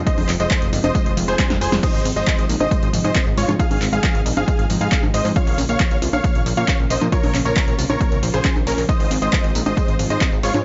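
An overdriven, up-front electronic kick and a punchy analog drum machine of snare, handclaps, hi-hat, congas, tambourine and crash cymbal drive this straight 4/4 excerpt of euphoric uplifting trance, with a short drum fill at 1.4 seconds and sidechain pumping on the hats, percussion and cymbals. A funky sawtooth bass plucks beneath a thick, warbling vintage pad whose chorused chords sit in the background, moving from Fm7 through Ab6 and Bbm. A huge, detuned supersaw lead carries the melody with dub echo, joined by a clear baby grand piano second line and a very quiet, mellow pluck arpeggio, all under light reverb.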